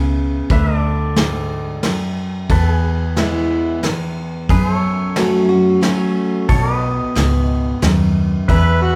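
A gentle waltz pulse in three sways through this short honky-tonk and classic country excerpt, nostalgic and heartfelt in mood. A full-bodied picked dreadnought acoustic guitar sits up front with the accompaniment, while a round, foam-muted vintage electric bass plays underneath with a dark, amped tone. Soft brushes on the drum kit enter at 0.5 seconds, bringing a punchy kick, a medium-tuned snare and dark ride cymbal with a natural, small-room character. High above, a bright, twangy pedal steel guitar holds sustained chords with fingerpicked attack, slide and volume swells, its clean, compressed sound sitting back in the mix. The chords move from D to E to F#m to B. At 8.5 seconds a gritty, overdriven harmonica slips in with a second line, showing light vibrato, scooped notes and tongue slaps in a jazz-flavoured style, and the whole piece sits in the lingering reverb of a church or concert hall.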